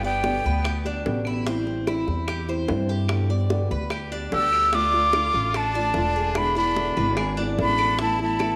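A wet echo chamber gives this cut from a longer Cuban son and guajira piece a roomy, warm glow, with a danceable feel. The breathy silver concert flute carries the melody up front, its straight tone soft in attack and slightly unsteady. A brilliant, punchy trumpet adds a forceful second line with vibrato and scooped notes, and flute and trumpet sound briefly at the start, drop out, then return at 4.3 seconds. Underneath, a thumb-plucked flamenco guitar supplies the accompaniment, a Cuban tres picks bright, metallic arpeggios on double strings, and a dark, thumpy pizzicato upright bass with gut strings sits up front. Tight, high-tuned bongos struck with hard hands stay in the background alongside woody claves, which enter at 0.6 seconds, as the harmony moves from G through Am7, Dm and E7 to a closing Asus2.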